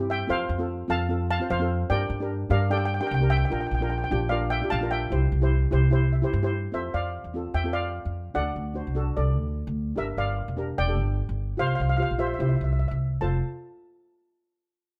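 Calypso at a sunny, bouncy 148 BPM in F major, cut from a longer piece, where a dry, close-miked double-seconds steel pan struck with medium rubber sticks plays metallic, up-front chords over woody pizzicato upright bass on steel strings, while a mellow, soft melody pan on soft rubber sticks shimmers through plate reverb; after a steel pan fill from 5.9 to 6.7 seconds, the harmony turns through Fmaj7, D7 and Gmadd9 before settling home on F.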